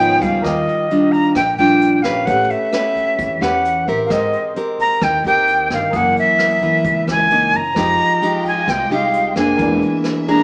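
Sophisticated and romantic, this bossa nova excerpt moves at 131 BPM in Eb major, with an airy, expressive jazz flute carrying the melody up front, complete with vibrato and a crisp chiff, over bright, fingerpicked nylon-string guitar whose finger squeaks are audible. An intimate grand piano with audible action noise sits in the background alongside woody pizzicato upright bass, which stops at 9.8 seconds, and a distant, roomy brush kit with a tight kick, hi-hat and rim clicks. A lush bowed string section returns at 7.8 seconds over rich chords running from Ebmaj9 to E7#11, all under moderate plate reverb with a small-speaker sound heard from further back in the room.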